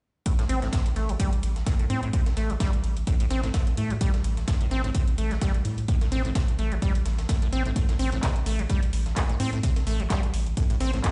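Acid house at 128 BPM in A minor with a swung 16th feel, this trippy, gritty excerpt from a longer piece sets a punchy, up-front electronic kick and a round, deep analog bass that pumps under sidechain beneath a squelchy, resonant liquid acid riff with filter sweeps, chorus, overdrive and delay, while a booming analog drum machine adds dry handclaps and metallic hi-hats and a compressed, pitched-up breakbeat kit with a high-tuned snare, ride and hi-hats sits in the background, all heard through a big sound system in a bare room with large studio reverb and a muted top end.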